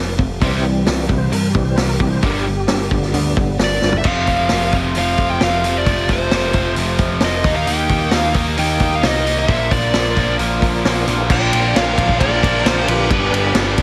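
A nasal lead guitar with a parked wah carries the melody from 3.6 s over a confident, driving classic rock groove of two overdriven rhythm guitars riffing in the background, a growling, round picked bass, an up-front vintage drum kit with a punchy kick and dark cymbals, and a reedy tonewheel organ holding very quiet sustained chords through a slow rotary speaker, while a lo-fi second lead guitar through a small cranked amp adds a very quiet line from 11.3 s in this small-room excerpt cut from a longer piece.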